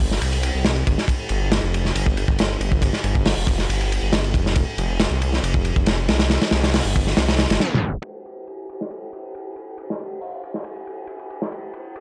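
A dry, gritty hardware recording cut from a longer piece carries an energetic, playful breakbeat groove in straight 4/4, where a crunchy, saturated drum kit with a tight kick, medium-tuned snare and dark cymbals sits up front beside a thick, menacing detuned saw bass with beating tones and a fast attack, until a tape stop at 7.6 seconds brings the bass to an end and the drums carry on alone under a filter sweep through to 12.0 seconds.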